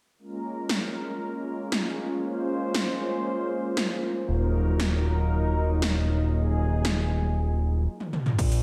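Lightly reverberant and vintage-sounding, this cinematic, nocturnal synthwave excerpt in Bb minor at 117 BPM opens on a smooth, warbling, detuned analog pad of sustained chords with lush chorus and sidechain pumping, moving from Bbm7 to Ebmadd9. Overdriven 80s electronic pad drums bring metallic hi-hats, crash cymbal and a gated snare and toms, while a fat, nasal, saturated analog bass pumps in at 4.3 seconds. During a stop at 7.9 seconds, a drum fill leads to a single punchy, overdriven electronic kick at 8.4 seconds.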